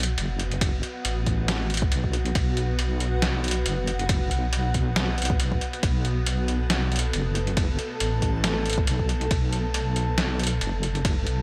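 A dark, wobbling deep bass, detuned and up front with chorus and tube saturation, anchors this brooding, cavernous deep dubstep excerpt at 138 BPM in a half-time 4/4 feel with swung sixteenths, holding on a B5 chord. A muffled, pitched-down, sampler-style trip hop kit of hi-hat, ride and medium-tuned snare sits close and compressed, and a layered electronic kick enters at 0.6 s; both drum parts carry overdrive and the character of a small room. Above them a cloudy, blurred granular pad drifts quietly with slow-attack chords and its own reverb, all set in a light digital ambience.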